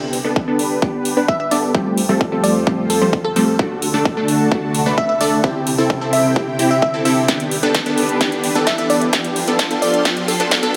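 A lush hall reverb with a 1.8-second tail spreads over this bright, full-bodied excerpt of festival progressive house, a triumphant, euphoric build-up in G major at 130 BPM in straight 4/4. From the start a thick, detuned sawtooth pad holds sustained chords with chorus, phaser and sidechain pumping, while an up-front supersaw stab plays a punchy riff through a low-pass filter and tape echo, its filter sweeping across the whole passage. A riser sits in the background throughout, and the big-room dance drum kit brings a punchy snare and metallic hats, joined at 0.4 seconds by a layered, punchy electronic kick placed up front. At 1.3 seconds a glassy, crystalline wavetable pluck enters with the melody, its decaying notes coloured by chorus and tape echo. The chords cycle through G, Fadd9, D and C, and a drum fill from 7.3 seconds drives the build toward its peak.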